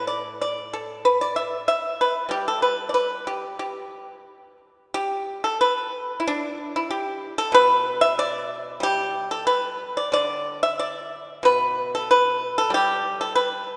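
Rubato in 2/4 at roughly 87-97 BPM, this elegant, flowing Chinese traditional solo in G gong mode features a bright, percussive pipa played with fingerpicks and placed up front, ranging from A2 to E5 and moving into a new section at 5.0 seconds, all carried by the long, wet reverb of a church or concert hall in a short cut from a longer piece.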